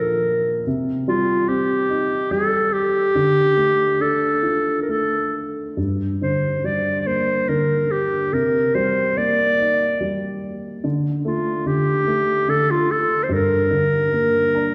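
A wet concert hall reverb surrounds this short, mournful Celtic slow air, which sounds as if it was recorded in a church or hall and is cut from a longer piece. At 72 BPM in 3/4 with a free, rubato feel in G minor, a warm, smooth-topped clarinet carries the longing melody in classical style, with a dark, woody upright piano accompanying up front through chords such as Cm7 and Gm. The piano adds a brief fill at 14.1 seconds.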